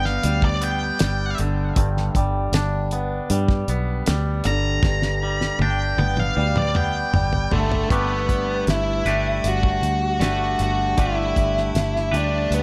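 Psychedelic rock at a slow 78 BPM in 4/4 with a straight feel, this short excerpt in G major has a hypnotic, hazy mood, cut from a longer piece. An octave-fuzz lead guitar carries the melody up front, its picked, distorted tone trailed by analog delay as it solos through the opening 7.9 seconds. Beneath it, a twangy electric guitar plays a clean, compressed, fingered riff colored by phaser, while a fingered electric bass holds the low end with a dark, round, foam-muted sound. A damped 70s drum kit comes in at 0.1 seconds, dry and mid-forward with a fat snare and tight kick across hi-hat, snare and toms, and a drum fill runs from 4.8 to 7.9 seconds. The harmony rests on G before shifting to Gadd9 as the second section begins at 7.9 seconds, all set in a small room ambience.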